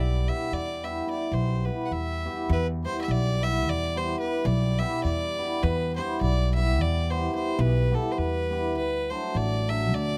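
The recording is dry and intimate, captured with close, detailed microphones that bring every part into sharp focus. It is a short cut from a longer Balkan folk piece in the spirit of a wedding band, moving in an uneven 11/8 metre with a straight feel and a restless, bittersweet mood. A single bowed fiddle carries the melody up front, its gut-string tone nasal and reedy in the upper register. Beneath it, a hammered cimbalom supplies mellow, shimmering accompaniment in the middle range. An upright bass, plucked on steel strings, sits prominently in the mix with a woody sound. All three play from the start to the end at 10.2 seconds, with the music opening into a new section at 2.5 seconds and the harmony shifting chords at 8.8 seconds.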